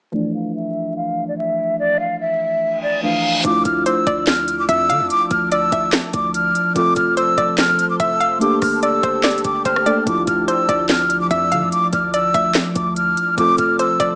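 A half-time trap groove with a knocking kick, sharp snare, crisp hats, rim clicks and handclaps arrives at 3.4 s, after a filter sweep over the opening and a reverse cymbal at 2.8 s, in this menacing, melancholic hip hop excerpt cut from a longer piece. A breathy, hollow jazz flute with vibrato carries the melody up front over dark, muted felt-like synth keys. A deep, boomy 808-style bass sits in the background, joined by a nasal, bouncy square pluck as a second line and a glassy, ethereal FM pad with phaser holding sustained chords, all framed by vinyl crackle and a small-speaker sound.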